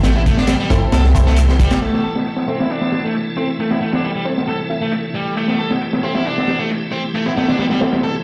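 A crunchy, low-passed breakbeat kit with a tight kick and high-tuned snare drives this funky, energetic breaks excerpt alongside a sludgy overdriven guitar riff, a piping tonewheel organ holding sustained chords through chorus vibrato and slow rotary speaker, and a swirling, phased detuned saw bass that sits up front until 1.8 s, while a bold, orchestra-hit-like synth stab enters in the background at 0.7 s and a filter sweep moves across the guitar from 1.8 s, all ringing in a bare stone room as if played on a big sound system.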